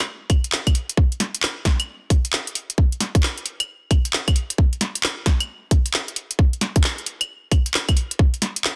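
A tight, up-front electronic kick drives this late-night, skippy UK garage excerpt at 133 BPM in 4/4 with a 64% swing on the sixteenths, entering at 0.3 seconds alongside a layered garage kit of cracking snare, handclaps, claves and warm hi-hats, both parts re-recorded in a small room and set in a dry, dense, heavily limited modern master.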